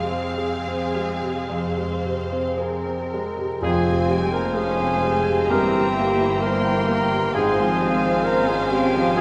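This is a tragic, passionate classical excerpt in a slow, rubato 4/4, cut from a longer piece. It opens with a polished grand piano carrying the melody up front, joined by a lush upper violin section with soft-attacked vibrato, while a focused second violin line, a very quiet viola accompaniment and a background cello bass fill out the strings. At 3.6 seconds the full orchestra joins: a pure, distant flute, a dark clarinet and a cor anglais add second lines, a clear bassoon and mellow French horns give quiet support, and a barely audible trombone section holds sustained chords. Bright trumpet stabs sound, a woody double bass section and a mellow tuba deepen the bass, and timpani on calf heads sound in the background until 5.0 seconds. The harmony moves from F minor through C7/G to Fm/Ab, all heard in a wet, resonant hall with vinyl crackle.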